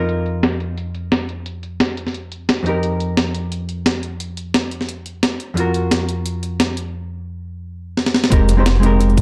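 Dark, roomy production frames this lush, soulful liquid drum and bass excerpt, where an up-front, clean hollow-body jazz guitar with vintage 12-bit sampler grit plays sus2 and major-seventh chords beside a compressed, pitched-up breakbeat sampler-style kit of low-pass-filtered hi-hat, shaker and snare, until, after a break and a short drum fill, a deep sine sub bass with octave, a tight overdriven electronic kick and a very quiet, high-tuned jungle sampler-style kit of hi-hat and snare arrive at 8.3 seconds on an Fm11 chord.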